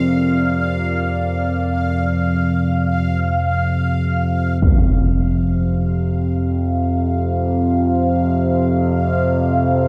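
Drenched in a wet spring reverb, this ominous, desolate dark ambient drone excerpt sets an up-front, warbling, vintage analog drone with chorus in the low register beneath a deep, detuned pad that sits dark in the background and fades away by 4.6 seconds, where a huge, low-pass-filtered impact strikes, while a bright, resonant texture of random filter steps bubbles throughout and fades in from that point to the close at 9.9 seconds.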